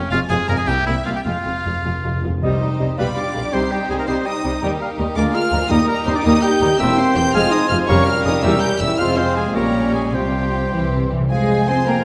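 Moving in a rubato 6/8, this dramatic, restless fragment of a quick classical-period orchestral movement sets a lush, vibrato-rich violin melody over a clear oboe, a second violin line, warm violas and cellos and deep double basses, with timpani fills struck by medium mallets on calf heads, before a pure silver flute, a soft, distant clarinet and a mellow bassoon join at 2.4 seconds and mellow French horns add sustained chords from 3.0 seconds, all set in a wet scoring-stage reverb.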